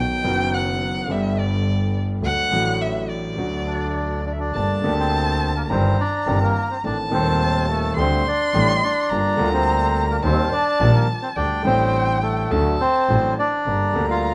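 Set in 4/4 at 105 BPM, this tango moves with a rubato feel, its tense and dramatic mood unfolding across a short excerpt from a longer piece. A bowed violin opens with a solo passage through the first 4.5 seconds: close and up front, its dark, expressive tone carries vibrato, soft attacks and portamento. Underneath, a concert grand piano gives intimate accompaniment with deep bass, long sustain and audible action noise. A bowed double bass adds an earthy, smooth-topped low line with light vibrato. The reedy bandoneon enters at 3.7 seconds to take the melody, sitting up front with a smooth sound, while the violin moves to a second line as the music settles into G minor at 4.5 seconds. Light reverb surrounds the ensemble as the harmony passes through chords such as Cmadd9/G, Adim, Dsus4 and Eb before resolving to Gm at 13.7 seconds.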